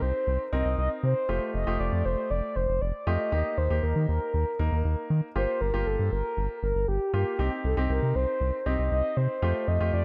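A light, small-room reverb frames this short synth-pop excerpt, cut from a longer piece, which moves at 118 BPM in a straight 4/4 with a driving yet cool mood. Up front, a mellow, horn-like synth lead with chorus, vibrato and a warbling vintage character carries the melody over a clear, polished baby grand piano, while a round, deep analog bass with a dark, nasal edge and fast attack sits prominently beneath. All three parts play throughout the 10 seconds over a progression that moves from Cm through Fadd9, Eb and Gm7 before returning to Cm and Fadd9.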